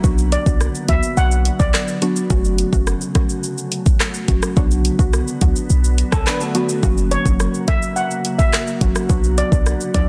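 A metallic, shimmering steel pan lead with delay floats over a hypnotic, bouncy dancehall groove at 106 BPM in B minor, where an electronic afro-pop kit with a deep kick, handclaps, rim click, shaker and softly clipped snare sits up front, a boomy 808-style bass rumbles in the background, a dark, detuned pluck and a glassy, warbling FM pad pump with sidechain compression, and a slightly broken-up electric guitar adds brief delayed arpeggios at 6.1 seconds before the pan returns at 7.1 seconds.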